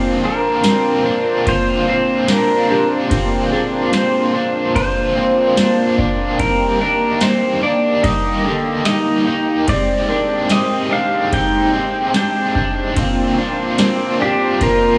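This blissful, ethereal dream pop excerpt sits in a moderate concert hall reverb that gives it a soft, airy glow. At 73 BPM in a straight 4/4 in Bb mixolydian, a biting overdriven guitar and a detuned sawtooth analog pad hold the harmony, both colored by chorus and tremolo, moving from Bbadd9 to Eb and Abmaj7 before returning to Bbadd9. A twangy electric guitar at the edge of break-up picks arpeggios through subtle chorus and tape echo, while a very quiet FM bell adds glassy, crystalline texture above. The pedal steel carries the melody from 0.3 seconds, bright and clean with fingerpicks, slide and volume swells, its tape echo trailing behind. From 0.6 seconds a booming analog drum machine, re-recorded in a large room, sets a deep kick and crisp snare alongside ride cymbal and tambourine.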